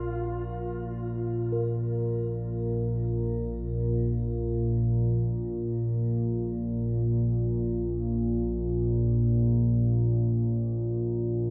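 Heard through worn, warbling tape in a cavernous cathedral reverb, this dark, unsettling ambient drone fragment unfolds in free time as a detuned sawtooth analog drone fades in over its full 11.5 seconds and sits up front, a round horn-like synth lead sounds F4 briefly until 0.9 seconds through chorus, shimmer reverb and tape echo, and a pure, airy quartz singing bowl rings softly in the background with slow beating.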